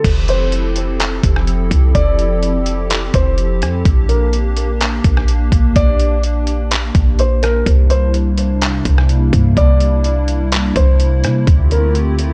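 Atmospheric cloud-rap hip hop at 126 BPM in a half-time 4/4 feel, this blissful, dreamy F major excerpt sets a felt-muted upright piano's intimate melody, trailed by tape echo, over a hollow, flute-like pad pumping with sidechain and ensemble chorus, a deep, boomy 808-style sine bass up front, and a compressed, pitched-down trip hop sampler kit of thumpy kick, rim click, handclaps, hi-hat and crash carrying vintage 12-bit grit, all moving through Fmaj9, Bb6, C7 and Dm11 in a digital ambience.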